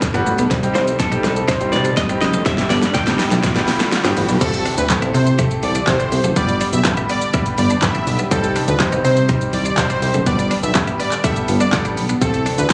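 Carefree and euphoric, this dance-pop excerpt opens on a build-up and drum fill, where a twangy twelve-string electric guitar carries the melody through dub echo until 4.1 s, a very quiet riser hovers beneath, and a second, subtly chorused twelve-string guitar plays a riff that runs to the end. A brilliant grand piano and a glossy, up-front synth bass, both with sidechain pumping, sit over a lush, airy pad, while the up-front electronic drum kit brings a punchy kick, fat snare, handclaps, shaker, hi-hat and crash cymbal. At the drop at 4.4 s a smooth, detuned supersaw takes over the melody with dub echo, all heard through light club reverb with the feel of a phone recording in the room.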